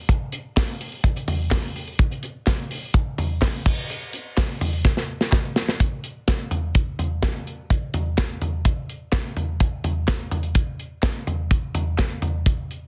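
Dense, heavily limited and set in a small room, this uplifting, hopeful pop excerpt puts an acoustic studio drum kit up front, its mid-forward tone with a tight kick, medium-tuned snare, rolled-off top, hi-hat, crash and toms driving a straight 4/4 feel and rolling through a fill from 4.8 to 5.8 seconds, while crisp, band-limited, vintage-sounding group handclaps sit in the background from 0.6 seconds.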